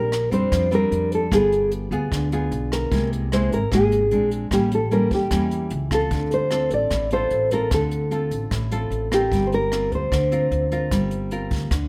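Bossa nova of a sophisticated, romantic mood, cut from a longer piece, where an up-front, full-bodied, thumb-plucked classical nylon-string guitar carries the melody over a second, fingerpicked nylon-string guitar with old strings moving through rich chords from Bb69 to Gm11, while a woody pizzicato upright bass and a jazz brush kit with a boomy kick, hi-hat and rim click sit beneath in a light reverb.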